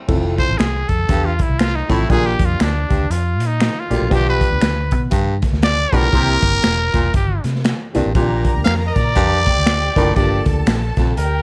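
Danceable and uplifting, this uptempo 1960s-style soul excerpt moves at 119 BPM in 4/4 with a swung eighth-note feel in F major, and it is cut from a longer piece. A growling, raspy trumpet carries the melody up front from 0.4 seconds with a slapback echo, while a breathy baritone saxophone plays a gritty riff down low. A crunchy breakbeat drum kit with a punchy kick, dark cymbals and a rolled-off top drives the groove alongside a round, foam-muted fingered electric bass and a woody, slightly detuned upright piano comping chords that move from Fmaj7 through G7/B and C7 to Gm7. Finger snaps sit in the background of a small room. At 6.1 seconds a very quiet, dark horn section adds a brief band accent, and from 8.2 seconds a lush bowed violin section with soft attack and vibrato joins in the upper register, also touched by slapback echo.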